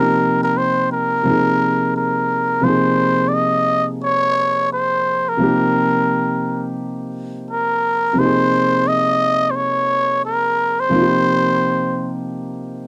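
A laid-back hip hop groove at 87 BPM in 4/4 swings its sixteenth notes at 60%, giving this cool, mellow passage an easy, unhurried lope. A dark concert grand piano supplies the accompaniment from start to finish at 12.9 seconds, its mellow chords sitting up front with a deep bass register. Over it, a trumpet with a cup mute carries the melody in a narrow upper range as a jazz-style solo, its veiled, raspy tone shaded by light vibrato, scooped notes and a soft attack, with a growling, gritty edge that comes across close-miked and up front before it stops at 12.2 seconds. The harmony circles around Cm7, moving through Bb7sus2 and Bbm9 before settling back on the home chord. The whole has the dry, intimate feel of a close 1970s-style studio recording with just a touch of light reverb.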